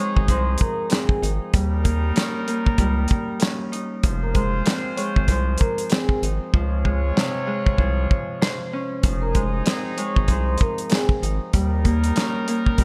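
An up-front soul drum kit with a tight kick, medium-tuned snare, handclaps and a rolled-off top drives this moody, reflective boom-bap hip-hop excerpt at 96 BPM in F minor, swung on the 16ths, with its hi-hats dropping out from 6.5 to 9.0 seconds. A deep, round analog bass with a fast filter pluck enters at 0.2 seconds beneath a ringing, fingerpicked Celtic harp that carries a cassette-tape color, while a mellow, airy vibraphone played with soft mallets and slow motor vibrato carries the delayed melody until 11.2 seconds. A clear, distant trumpet section adds roomy, classical-style stabs with delay over chords moving through Fm7, Eb7 and Dbmaj7, all set in a small room with light reverb and a bright 1980s-style digital sheen.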